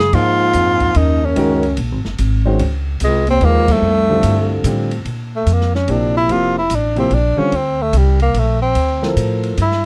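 A swung 3/4 pulse at 146 BPM drives this open, hypnotic modal jazz excerpt, cut from a longer piece, set in Ab mixolydian before moving to Bb lydian at 5.1 s. The drum kit sits low in the mix with dark cymbals, a medium-tuned snare and a boomy kick, alongside hi-hat, ride and crash, while the pizzicato upright bass sounds woody and growly, up front. A warm grand piano with long sustain supplies accompaniment over Ab9sus4 and Fadd9 chords, and the band hits an accent at 3.6 s. The tenor saxophone leads with a vibrato-laden, scooping melody, joined by a distant, roomy bass clarinet on a second line that stops at 4.6 s; both reeds have a breathy tone. On the shift to Bbmaj9 the saxophone takes a solo, all captured in a dry, close 1970s-style studio sound.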